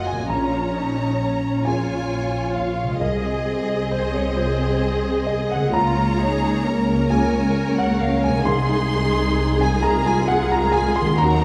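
Cinematic film score for orchestra, moving and bittersweet, unfolding in a rubato 6/8 at 44 BPM over a Bbm7, Fm/C, Db, Ab/C progression. A lush, distant violin section carries the melody with expressive vibrato and portamento while a second violin line sings above it. An intimate grand piano with audible action noise and symphonic violas fill out the accompaniment, focused cellos with a smooth top and woody, up-front double basses anchor the bass, and a mellow, ringing harp plays arpeggios in the background. It is all set in a moderate scoring-stage reverb with a dark, warm production.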